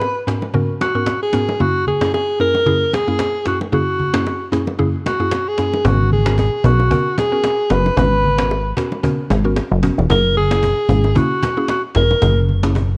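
A breathy, clear alto saxophone with vibrato carries the melody up front from the start, over a woody, round mallet-like synth pluck treated with chorus and phaser, a hard-handed cajon with faint snares, and ringing bongos and congas. This sultry, mellow afrobeats excerpt moves at 113 BPM in 4/4 with a light swing, moving between G#m11 and F#7. At 5.8 seconds a punchy, nasal analog bass enters up front, while light small-room reverb and the drift of worn cassette tape give the recording a vintage, warbling haze.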